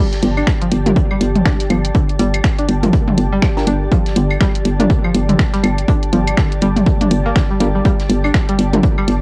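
Minimal techno at 122 BPM in 4/4 with a swung sixteenth feel, this short cut from a longer piece sounds clinical and quirky, with little reverb and the grain of a home cassette recording. A blurred, evolving granular cloud pad opens at 0.0 s, its bright, detuned haze soaked in its own reverb and pumping against the sidechain. An overdriven, punchy electronic kick sits up front alongside a hollow, bouncy FM bass holding a low G, both driving the groove. Around them, a garage kit adds finger snaps and tape-softened hats, tape-toned electronic claves and toms echo through analog delay, and a very quiet acoustic kit contributes hi-hat and a medium-tuned snare played with bundle sticks. Higher up, a twangy, nasal resonator pluck with chorus and delay riffs in the background, while a crisp, mellow wavetable chord stab with a moving notch enters at 0.9 s and repeats through analog delay.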